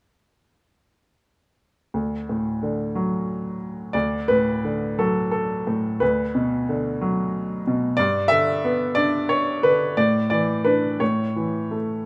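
The rhythm sways in a lilting six-eight, its beats uneven and pulled gently by rubato, giving the music a breathing, unhurried quality. This is a lyrical classical piece for solo upright piano, peaceful in mood, and cut from a longer work. The piano begins at 1.9 seconds and carries everything alone until 12.1 seconds, spanning from deep bass notes up into its middle-upper register. Its tone is clear and woody, with a natural, up-front presence and a short sustain that keeps each note distinct. A brief opening phrase gives way at 3.9 seconds to a longer passage whose harmony moves from D through Bm/D and G to a suspended Asus4 that settles onto A. Light reverb and a dark, warm production wrap the instrument in a soft, intimate glow.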